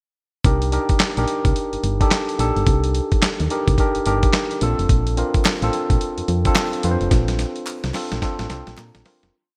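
Opening at 0.4 seconds with a gritty, compressed sampler-style drum kit playing a thumpy kick and a snare layered with clap in a hard-swung drum-machine beat, this bouncy, punchy new jack swing piece in C dorian at 108 BPM brings in, at the same moment, a round, fast-attack FM bass line with muted ghost notes and syncopated, rootless chord stabs from a worn, slightly out-of-tune tine electric piano over Cm7 and Bbmaj9. It adds crisp human group handclaps on the backbeat in the background from 5.4 seconds, and fades out from 7.1 seconds under a drum fill, joined at 8.2 seconds by a short electric piano fill, in a bright 1980s-style digital production with light reverb.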